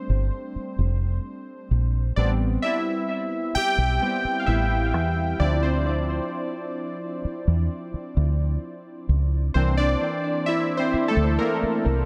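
A warm, detuned sawtooth keyboard opens at 0.0 seconds with a filter sweep and a fast attack that decays, its tone thickened by chorus and trailed by analog delay. This short excerpt is moody, longing contemporary R&B in a slow 65 BPM with a straight 4/4 feel. A deep dub fingered electric bass joins at 0.1 seconds, dark and round, with a foam-muted, punchy attack that sits up front, amped and direct. The keys carry the solo across the whole passage, playing over chords that move from F69 to Am7, then Dm9, and settle on C7. Light reverb and an echo-heavy mix give the keys and bass a spacious, hazy setting.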